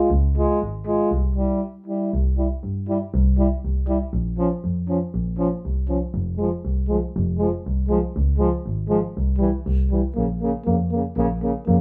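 A moderate studio reverb gives this short cut from a longer Balkan brass band piece the feel of a band playing live together in one room. The mood is fiery and restless, moving at 120 BPM in a swung 2/4 in C phrygian dominant. A bowed double bass sits up front with a dark, woody tone, smooth on top and touched with light vibrato, carrying the low line from 0.1 seconds. Above it, a euphonium in a classical style with gentle vibrato and a warm trombone with a roomy sound share the accompaniment, with the trombone playing in a lower range. The harmony moves from Db to C, then through Bbm and Fm and back to Db and C. A brief break at 1.6 seconds interrupts the opening, and a new section begins at 10.2 seconds on Bbm just before the cut ends.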